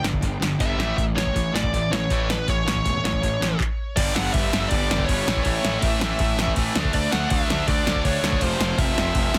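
An overdriven electro drum machine sits up front in this energetic, upbeat punk rock excerpt at 162 BPM, with its deep kick, punchy snare, handclaps, metallic hi-hats and crashes, and a short room sound on the snare, claps and hats. A bluesy, distorted lead guitar carries the melody with digital delay over two bright, distorted rhythm guitars playing riffs in the background, one of them scooped and compressed, while a growly fuzz bass anchors the low end. The band breaks for a stop from 3.6 to 4.0 seconds before the second section, moving through chords on G5, A, D5 and F5 in a dense, heavily limited mix with little reverb.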